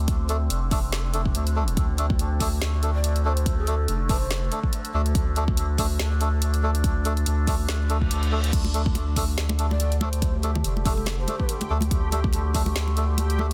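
This cavernous, dark slice of deep dubstep opens on a D5 chord, with a nasal, sawtooth-edged drone carrying moving overtones through chorus, reverb and vintage 12-bit sampler grit, resting over a round, soft sub bass that sits up front. A deep, layered electronic kick and a deep house kit with a woody snare, dark hats and crash arrive almost at once, moving at 142 BPM in a half-time feel with swung sixteenths in D minor. Reedy, boxy melodica stabs soaked in dub echo join nearly as quickly. A breathy, mellow shakuhachi with vibrato and a chiffy attack drifts in the background from 2.9 seconds, returning later under dub echo. An electronic reverse cymbal marks 7.9 seconds, and close, dry congas with hard hands follow at 8.6 seconds, while a reversed, detuned granular texture swells dreamily behind the last stretch. The dense, heavily limited modern master sits in a digital ambience, and the passage is cut from a longer piece.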